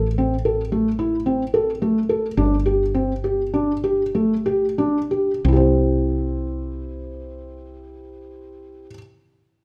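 A felt-muted upright piano and a woody fretless electric bass open together in this short passage of contemporary chamber music in 5/4, the piano's soft, intimate arpeggios carrying audible action noise over the bass's round, hollow-body tone, both sitting up front in a moderate recital hall reverb. The pace slows from 0.7 to 5.4 seconds as the harmony moves from A minor to G5, giving a hopeful yet restless air. A new section arrives at 5.4 seconds on a C chord, and the fragment, cut from a longer piece, ends shortly after.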